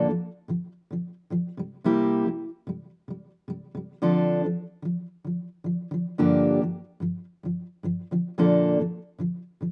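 A fingerpicked steel-string acoustic guitar plays alone and up front in this reflective, wistful pop excerpt, its full-bodied dreadnought tone ringing through light reverb at 110 BPM with a gentle sixteenth-note swing, moving through Bb, C7, Dm7 and Gm7 before settling on Bbmaj7 near 8.1 seconds.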